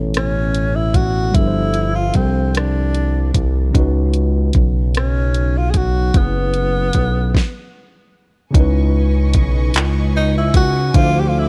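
A breathy, close-miked tenor saxophone carries the yearning, sultry melody in this slow six-eight R&B excerpt at 50 BPM, its subtone and vibrato trailed by tape echo over suspended ninth chords. A smooth, detuned synth bass and an up-front, produced drum kit of soft kick, fat snare, rim click, hi-hat and handclaps, roughened by vintage 12-bit sampler grit, anchor the groove, while a worn, slightly out-of-tune tine electric piano with its own tape echo sits in the background. After a stop from 7.3 to 8.5 seconds, a lush bowed string section enters at 8.5 seconds as the harmony turns to minor ninth chords, in a dry, echo-heavy mix.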